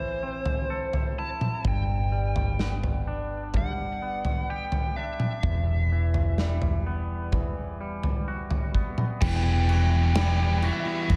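Post-rock with a brooding, melancholic mood, this short excerpt opens on a biting, overdriven lead guitar melody over clean, twangy picked arpeggios with subtle chorus and tape echo, a round, hollow-body fingered bass and a big, up-front acoustic drum kit with a punchy kick that enters at 0.5 seconds, moving from Am through G to Emadd9 before two bright, distorted guitars join with a riff in the background at 9.2 seconds, all in light studio reverb.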